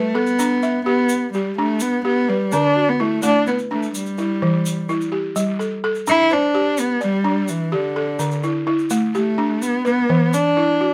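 A dark, bowed cello carries the melody up front, its close, single-player tone rich with vibrato and a woody grain, and from 5.4 seconds it takes a solo turn. Alongside it, a balafon plays arpeggios struck with soft rubber mallets, its dry, buzzing sound full and close-miked. A grainy, bright egg shaker adds quiet, band-limited percussion with a vintage acoustic character from 0.3 to 10.4 seconds. This joyful West African traditional string and xylophone music moves in a straight 12/8 feel, circling G, D and E minor before shifting to bare G5 and D5 chords and a return to E minor in its second half. Light reverb frames this short fragment of a longer piece.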